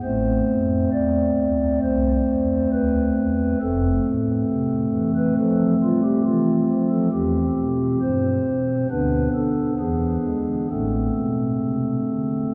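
Classical chorale-style music, dark and grave, played solo on a pipe organ's stopped flute stops with a soft, hollow, mellow tone and romantic voicing, the organ sitting up front in a wet cathedral reverb that hangs for 5.6 seconds, its harmony moving through a short progression that returns to its opening chord by 10.7 seconds in this passage cut from a longer piece.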